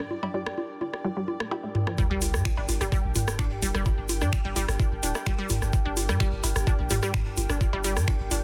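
Minimal techno at 128 BPM in G minor, hypnotic and clinical, opens with a squelchy, pumping resonant blip pluck riff alongside a booming, tape-warm analog drum machine of congas, cowbell, rim click and toms, a very quiet bubbling stepped-filter texture and a warbling, nostalgic lo-fi pad, until the drop at 2.0 seconds brings in an overdriven knocking kick up front, a grainy tube shaker, a very quiet sub drop impact, a punchy sine sub bass and a garage kit of finger snaps and metallic hi-hats, all under light reverb and a dense, heavily limited master.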